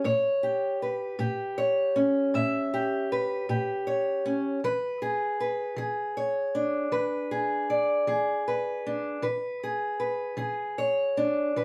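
The rhythm moves in a 12/8 metre counted in slow dotted-quarter beats, played with a straight feel that gives this short cut from a longer blues its rollicking yet laid-back character. A fingerpicked steel-string acoustic guitar carries the whole passage alone from 0.0 to 11.6 seconds, reaching from its low A2 up to E5. Its tone is boxy with a parlour-guitar character, and it sits up front in the mix. The harmony rests on A7 before shifting to E7 at 4.6 seconds. A wet studio reverb places the listener further back in the room.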